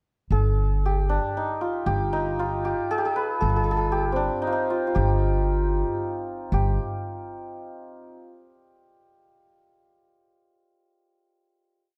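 A bright, shimmering santur carries an ornamented modal melody up front in this passionate, festive Persian modal ensemble piece in G dastgah homayun at 116 BPM in 3/4, alongside a woody pizzicato upright bass playing a simple root-and-fifth line on G1 until 6.8 seconds, after which the santur rings on through a final note that closes at 8.1 seconds, set in light reverb with a dark, warm production.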